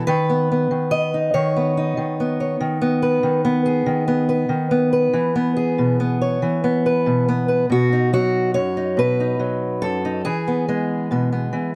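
Folk music for solo fingerstyle guitar, this gentle, nostalgic piece moves at a slow 47 BPM in a lilting 6/8 with a straight feel, set in B major. A single fingerpicked acoustic archtop guitar carries everything, sitting up front in the mix with a warm tone and a finger squeak that adds an intimate, handmade quality. Its range spans from F#2 up to D#5, giving the lone instrument both a grounded low end and clear upper notes. The harmony opens on Badd9 over D#, drifts through G#m and E, then settles onto B at 7.7 seconds before returning to E, where this short cut from a longer piece ends at 11.8 seconds. A moderate studio reverb and a dark production lend the guitar a soft, enveloping sense of space.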